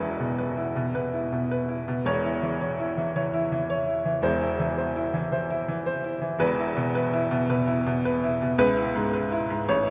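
Classical virtuoso piano study with a heroic, sparkling mood, played by a solo baby grand piano whose brilliant, up-front tone and short sustain ring from deep bass up to the treble across the full 9.9 seconds. The playing moves with a free, rubato feel over harmony that shifts between E, C#m/E and C/E before landing on C#m7 at 8.6 seconds. The piano sits in a vast, echoing space with a long cathedral reverb, and the passage is cut from a longer piece.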